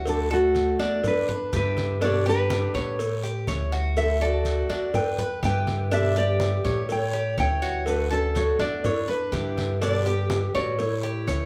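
A woody, growly upright bass sits up front in this sunny, relaxed Cuban son and guajira cut at 123 BPM in D major, while a classical nylon-string guitar carries the melody with audible finger squeak and a distant, airy bass recorder adds a breathy, vibrato-laden second line. A bright, metallic Cuban tres plays arpeggios over a boxy fingerpicked archtop guitar, cycling through D, Em7, G and A7. In the background sit low-tuned damped congas, a tight high-pitched cowbell, a raspy guiro and grainy maracas, all blended by the wet reverb of a large room where the band plays live together.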